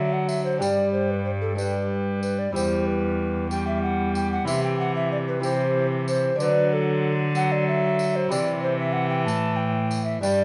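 In a straight 6/8 metre, this courtly, festive renaissance-style consort dance is led by a hollow, airy tenor recorder carrying the melody with tongued chiff and vibrato, over a delicate, fingerpicked lute with double gut strings sitting in the background. A viola with light vibrato and a rich cello, both bowed by single players with a reedy gut-string period tone and placed up front, supply accompaniment and bass, while a jingly, saturated tambourine enters at 0.3 s. The harmony moves from D through G, Em and C, all heard in a moderate stone room with a 1.2 s reverb tail and a softened top end, in an excerpt cut from a longer piece.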